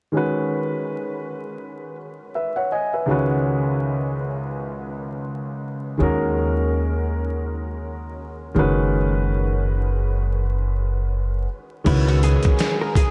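Nocturnal and cool, this jazz-hop excerpt drifts at 82 BPM in 4/4 with a swung sixteenth-note feel, cut from a longer piece. A dark, mellow concert grand piano opens alone, voicing mostly suspended chords that move from C#sus2 through D#m7 and back, its deep bass sitting up front. At 6.0 seconds a woody, growly upright bass joins, plucked pizzicato on steel strings. Near the end, at 11.9 seconds, a clean hollow-body electric guitar takes a brief melody, fingered and compressed, colored by analog chorus and tape echo, while a dusty sampler-style drum kit arrives with a thumpy kick, fat snare, hi-hat and crash, gritty and re-recorded in a large room. The dreamy mix is soaked in a huge ambient reverb with a long tail and a layer of vinyl crackle.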